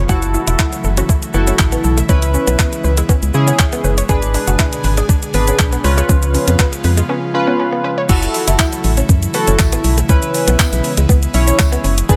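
Dance-pop at 120 BPM in F# minor, this excerpt feels driving yet bittersweet, moving from F#m7 to C#m7, a diminished chord and C#7 before cycling back. Up front, a crisp, overdriven 8-bit drum machine with a thumpy kick, handclaps, hi-hat, shaker and crash cymbal sits beside a hollow, dark, organ-like FM bass with a fast attack and a decaying tone, and every synth part breathes with sidechain pumping. A glossy, retro chorused polysynth carries mellow accompaniment chords, while an airy, breathy pad sustains underneath with a slow attack and long release. In the background, a lush, warbling unison pluck spins arpeggios through dub echo until it drops out at 8.1 s after a short break, and a clean, direct-recorded electric guitar plays a compressed, picked riff bathed in lush chorus. A very quiet, jingly tambourine, distant as if in a large room, joins from 8.6 s, all set in a digital ambience.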